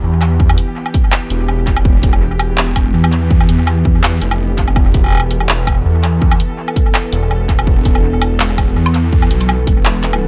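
A half-time drum and bass groove at 165 BPM in 4/4 sets a heavy, cinematic tone, its 16ths carrying a light swing, in this excerpt cut from a longer piece in E minor that rests on an Em chord throughout. A layered, produced drum kit of handclaps, hi-hat and woodblock run through analog delay enters at 0.2 seconds, joined by an up-front electronic kick drum that lands with heavy weight from 0.4 to 9.8 seconds. Underneath, a thick, swirling detuned saw bass moves between E1 and E2, its saturated sawtooth, square and sine tones sustained with a fast attack and colored by a phaser, sitting prominently in front. A tense, string-like bowed drone holds sustained chords from E3 to A4, its wave-folded unison sawtooth and noise layer rising slowly and lingering with vibrato, built-in reverb and sidechain pumping. The overall mix is dry in room sound but echo-heavy and loud.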